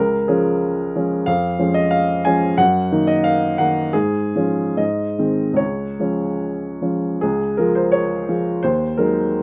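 In a gentle two-beat metre, the pulse bends freely with rubato, giving this short passage from a romantic character piece for solo piano an unhurried, speaking quality. The mood is lyrical and warm, and the upright piano carries everything alone from start to finish, ranging from deep bass notes up into the bright upper register. Its tone is woody and natural, placed up front by close, detailed microphones that catch the intimacy of the instrument. The harmony moves through plain, song-like progressions centred on the home chord, settling back there at 5.6 seconds before the opening idea starts again at 7.2 seconds. The room adds little reverb, so the sound stays dry and near, as if the listener were seated beside the player. The fragment breaks off at 9.4 seconds, having begun a return of its opening material.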